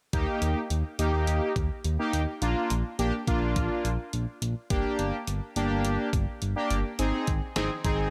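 From the first moment, a wistful yet upbeat synth-pop excerpt sets bold, fat, filter-swept analog synth brass with chorus over a dark, smooth ring-modulated synth bass and a detuned 8-bit drum machine with a thumpy kick and tape-warm, small-room character, all in light digital ambience.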